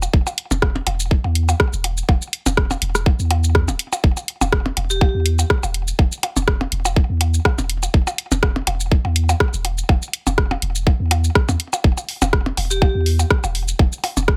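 Hypnotic and cool, this minimal techno cut rides a lightly swung 4/4 groove from the first moment. A tight, layered electronic kick sits furthest forward, joined by a garage drum kit of hi-hat, rim click and shaker set in a small room reverb. A deep, punchy sub bass with a pitch-drop attack and sustained sine tone pumps with sidechain compression. Overdriven percussion blips, touched with delay and a small room reverb, add a gritty electronic edge. Twice, at 4.9 s and again at 12.7 s, a vibraphone struck with hard mallets rings out a brief, bright, metallic G4 note trailed by delay. The overall mix stays dry and close, and the excerpt is cut from a longer piece.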